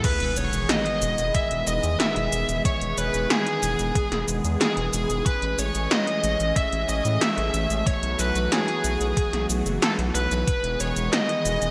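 A bright 1980s-style digital sheen and a lush hall reverb frame this uplifting, dreamy synthwave excerpt in E major at 92 BPM, where a dark, distorted, bluesy lead guitar carries the melody over a brassy, detuned sawtooth pad with chorus and sidechain pumping, a round, deep square-and-sine bass, gated-snare electronic drums with metallic hats and a thumpy sampler-style kick, and a background sub drop at the opening, as the chords move from Emaj7 through Amaj7 and B7sus4 back to Emaj7.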